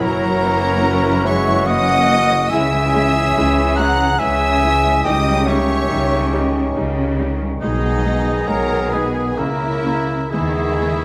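In a rubato triple metre, this slow, elegiac and yearning romantic orchestral excerpt places a smooth, vibrato-laden violin section on the high melody, while a pure-toned flute, a lush background second violin section and a warm cor anglais carry second lines above an even viola section accompaniment, a distant, roomy French horn section holding sustained chords, a thumb-plucked, ringing harp in arpeggios and soft, mellow trumpet stabs, with a focused cello section and a rich, far-off double bass section grounding the bass in a moderate scoring-stage reverb.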